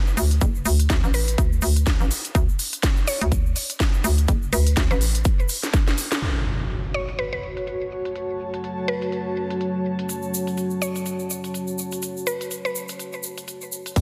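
Swaggering and gritty, this 124 BPM bass house cut in F# minor with a swung 16th feel opens on a grainy egg shaker, a hollow, bouncy FM bass with sidechain pumping, a punchy up-front electronic kick, a garage drum kit of cracking snare, crisp low-passed hats and tape-warm cymbals, and a woody, round mallet-like pluck with chorus and delay, until a drum fill and band accent land on an electronic impact at 6.2 s. An airy, breathy pumping pad then enters, a deep, moody detuned ambient pad with a filter sweep joins at 8.2 s, and the kick and bass stay away until they return at 14.0 s, all under a dense, heavily limited modern master.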